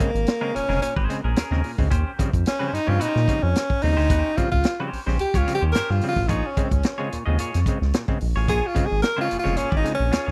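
A dry, close 1970s-style studio sound frames this cool, sly funk passage, cut from a longer piece, moving at 110 BPM in a straight 4/4 in Bb dorian. A breathy tenor saxophone takes the solo throughout, sitting up front with a clear, jazz-style tone, vibrato and scooped notes, its line given a slapback echo. Beneath it, a round analog bass plays deep and mellow with a fast attack and sustained notes, while a vintage acoustic drum kit sets a punchy kick, a medium-tuned snare and hi-hat with a rolled-off top, both close in the mix. An overdriven clav adds percussive, stringy stabs through a combo amp, and from 0.4 s a clean electric guitar enters with bright, twangy, picked accompaniment bathed in spring reverb. The harmony shifts from Bbm7 to Eb13 at 1.9 s and returns to Bbm7 at 6.3 s.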